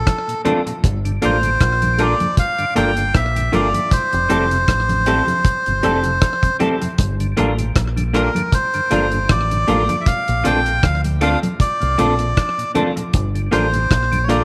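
A reedy, breathy melodica carries the longing melody over a round, dark fingered dub bass from the very start of this smooth lovers rock reggae excerpt in G dorian, moving at a relaxed 78 BPM with a lightly swung sixteenth feel. A dry, up-front drum kit with tight kick, hi-hat and rim click arrives at once alongside very quiet, low-tuned congas, and within the first half second a piping tonewheel organ on slow rotary speaker sits in the background, joined by a worn, slightly out-of-tune tine electric piano and slightly broken-up, lo-fi guitar stabs. Tape echo trails the melodica, slapback echo touches the organ and electric piano, and a moderate spring reverb colours the whole mix as the chords move from Bbmaj7 through Gm7 and Fmaj9.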